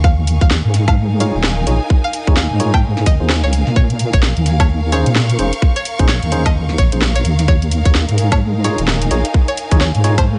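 UK garage in a two-step shape, this moody, skippy excerpt swings its sixteenths and is cut from a longer piece. An overdriven electronic kick sits up front and tight from the start, joined at 0.3 seconds by a garage kit of hi-hat, cracking snare and woodblock, also overdriven and layered. Beneath them a deep, dark wobble bass built from detuned sawtooth and sine tones, chorused and compressed, holds the low end just as prominently. A twangy, warbling resonator pluck carries the melody in a vintage, string-like voice treated with chorus, phaser and delay, while a lush, bowed symphonic string section pumps softly against the sidechain with expressive vibrato. From 1.2 seconds a bright, clean tine electric piano adds stabs through a low-pass filter that sweeps across the passage, with digital delay trailing the chords as they move from Eb9sus4 to Bbm11 and back; the dry mix carries vinyl crackle and a dulled top end, and a faint reverse cymbal surfaces in the background at 10.3 seconds.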